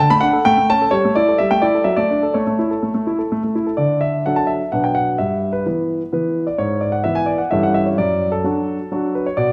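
A wet recital-hall reverb surrounds a natural, up-front concert grand piano with a deep bass in a dark, warm production, in this short cut from a longer classical-period sonatina. The solo piano moves gracefully in D major at 129 BPM in 3/4 with a straight feel, spanning F#2 to B5. Its elegant opening phrase returns from 3.8 s, passing through B minor and E minor harmonies before arriving back on D.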